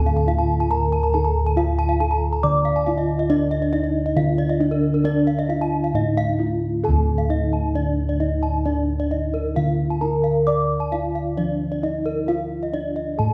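A bronze metallophone melody and bossed gongs open this brilliant, hypnotic fragment of Balinese gamelan: the melody is soft and mellow under padded disc mallets with a vintage, band-limited tone, while the gongs sound round, full and beating, close-miked beneath it. A second metallophone enters at 0.1 s with ringing arpeggios struck by a wooden mallet, dry and up front, its paired tuning producing shimmering beats. The uneven beat in four carries through two sections, the second arriving at 6.8 s, all heard within a reverberant recital hall from further back in the room.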